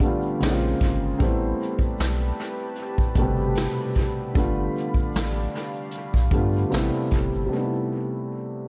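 A dark, woody upright piano opens this nostalgic, hazy lo-fi hip hop excerpt at 76 BPM in A minor, sitting up front with long sustain and a cassette-tape coloring, while a vintage brush drum kit plays from the start with a punchy kick, a medium-tuned snare and hi-hat, its warm, rolled-off top carrying an analog delay. A warbling, detuned pad holds sustained chords in the background, its slow attack and long release thickened by chorus and built-in reverb, and a grainy tube shaker with analog delay adds faint texture behind it. At 0.4 seconds a round, sine-like sub bass enters, deep and mellow, as the harmony moves from Bbm9 to Am9 and later through G7 back to Am9. The groove swings gently on the sixteenths, and the echo-heavy mix has light reverb, small room ambience and a cassette tape character. The drums drop out at 7.3 seconds, and after the pad, shaker and bass stop at 7.5 seconds the piano carries on alone to the end at 8.7 seconds.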